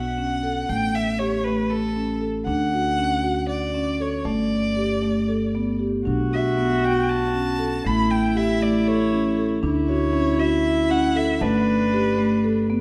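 A mellow marimba played with soft mallets opens this restless, hypnotic passage of contemporary chamber music, its round, close-miked arpeggios sitting dry and up front. At the same moment a rich, bowed violin carries the melody with vibrato, a soft attack and expressive portamento, while a woody, thumpy pizzicato upright bass holds the low end. The music moves in an uneven 7/8 at 235 BPM counted in eighths, with a straight feel, and the harmony drifts through open, suspended colours such as Dmaj7, Gsus2 and Dmaj9. At 6.1 seconds a warm cello joins with a second line, played sul tasto with a pure, floating tone and a smooth top. A moderate recital-hall reverb surrounds the ensemble, and the passage is cut from a longer piece.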